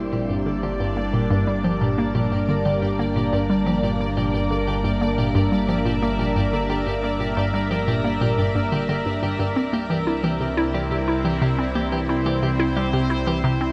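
Ambient, sequencer-driven space music at 89 BPM in G dorian, cosmic and hypnotic, built on a bright, up-front resonant pad whose sustained, chorused chords move from Gm to C at 9.6 seconds, while a hollow, warbling square-wave pluck plays a bouncy riff through chorus and analog delay. Around them a fat, nasal analog bass holds the low end, a pulsing, tempo-synced gated texture sits high on D5 with its own built-in reverb, and a clean, scooped electric guitar fades in with delayed arpeggios in the background. A wet shimmer reverb with a 6.7-second tail bathes this short cut from a longer piece.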